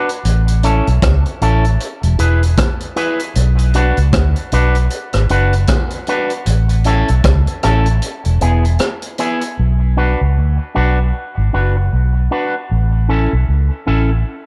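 A swung sixteenth-note pulse at 77 BPM in 4/4 sets a meditative, hypnotic dub reggae groove in B dorian, cut from a longer piece. A vintage drum kit plays hi-hat, punchy kick and rim click with a mid-forward, rolled-off top and a studio-room sound, sitting up front until it drops out at 9.6 s after a break that begins at 8.0 s. The muted fingered electric bass is the loudest part, dark, round and amped with a foam-muted thud, holding the low register from E1 to D2 for the whole excerpt. An electric guitar with an envelope filter provides clean, picked accompaniment between B3 and B4, shaped by a high-pass filter and a dub echo. The chords cycle through A, E and Bm, and the guitar and bass carry on over the drumless closing stretch. Light small-room reverb and a dark, warm production give the track an intimate, shadowy feel.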